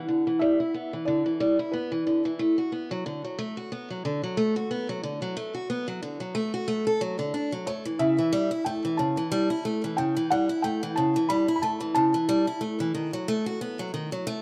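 A lightly swung 16th-note feel at 91 BPM in 4/4 carries this short, delicate folktronica fragment, cut from a longer piece and tuned slightly under standard pitch at A4 = 439 Hz. A picked steel-string acoustic guitar plays arpeggios from start to finish at 14.4 seconds, its bright, boxy parlour tone with fresh strings sitting up front while a low-pass filter sweep shapes it throughout. A felt-muted upright piano carries the melody in a soft, mellow register with short sustain and a thin felt character. It appears briefly at the opening and returns at 7.7 seconds, its notes trailed by a delay. The harmony moves through Em7, D6, A7/C# and B7, and a moderate plate reverb wraps the rough home-demo mix in an intimate, close-up atmosphere.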